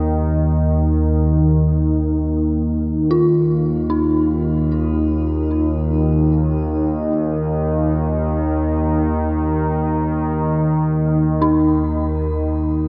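A huge, echoing space with a long, wet reverb tail surrounds this cavernous, unsettling dark ambient drone, cut from a longer piece and moving in free time. An up-front analog drone of sawtooth and pulse waves with pulse-width modulation warbles and evolves from the start, sustaining a low Ebsus2 with a slow attack and vintage chorus. At 3.1 seconds a dark, detuned synth bell enters with eerie, inharmonic FM arpeggios, its fast-attack notes decaying through phaser, tape echo and shimmer reverb, while the harmony dissolves at 6.6 seconds.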